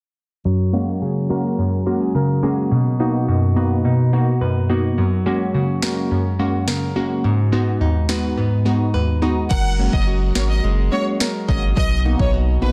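A dense, heavily limited modern mix with light reverb opens this sunny, bouncy dancehall excerpt, cut from a longer piece. From the start a glassy, crystalline wavetable pluck carries the accompaniment up front, its detuned, ring-modulated tone shaped by chorus, sidechain pumping and a filter sweep that runs until 9.5 seconds, while a fingerpicked flamenco guitar spins arpeggios behind it through a low-pass filter and delay. An electronic afro-pop drum kit enters at 5.8 seconds with a deep kick, sharp snare and crash cymbal, roughened by vintage 12-bit sampler grit. At 9.5 seconds a thick, saturated sine sub bass arrives up front alongside a distant, lush studio violin section that sings the melody with focused vibrato and delay. The harmony moves among F#add9, Bmaj7 and G#m7, giving the groove an open, lilting brightness.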